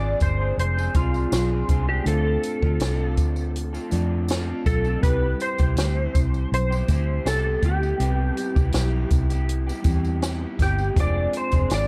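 A dark, warm production sits in a small room ambience, giving this short cut from a longer indie and bedroom pop piece a hazy, nostalgic mood at an unhurried 81 BPM in 4/4 with a straight feel, in C major and tuned slightly low to A4 = 438 Hz. A clean lap steel guitar carries the melody with slide and volume swells, its compressed, fingered tone treated with ensemble chorus and tape echo. Beneath it, an electric guitar through a small old amp plays picked, slightly broken-up, lo-fi accompaniment coloured by subtle chorus and vibrato, while a worn, lightly overdriven tine electric piano sits in the background, slightly out of tune and heard as if through its built-in speakers with a cassette-tape character. A vintage muted fingered electric bass sits up front with a round, foam-muted, amped sound. From 0.2 s a compact cocktail drum kit adds dry, natural hi-hat, a punchy kick and a high-tuned snare, joined by a jingly, close tambourine tucked in the background. 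The harmony drifts from Fm6 through Dm7 to a long Cmaj7 before returning to Fm6 at 11.0 s.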